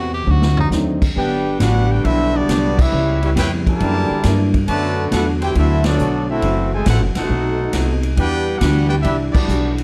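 An edgy, forceful tenor saxophone with scooped notes and plate reverb opens this swinging, energetic G major big band excerpt at 137 BPM, over a dark archtop guitar, a very quiet mellow trombone section and a woody, thumpy upright bass up front, before a drum fill at 0.3 s, a brief touch of baby grand piano, and a clear, tight trumpet melody from 1.2 s, set against a second trombone line and band accents, all in a dark studio room.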